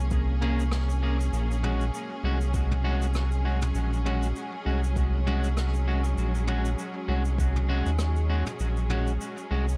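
A 4/4 groove with a light swing on the sixteenths sets a meditative, hazy ambient dub mood in this short fragment of a longer piece. A round analog bass sits up front from the start, dark and sustained with a fast attack, blending sawtooth and sine tones deep in the low register. Beneath it, a deep, layered electronic kick stays in the background until 7.5 s, while a jazz kit played with brushes adds rim clicks, shaker and toms with a natural studio-room character, drenched in dub echo. A clear symphonic string section holds smooth, even bowed chords with light vibrato, moving from Bbm7 to Gbsus2/Bb. An electric guitar at the edge of break-up places twangy, fingered stabs that also trail off into dub echo. The whole mix sits in a small room ambience and leans heavily on echo.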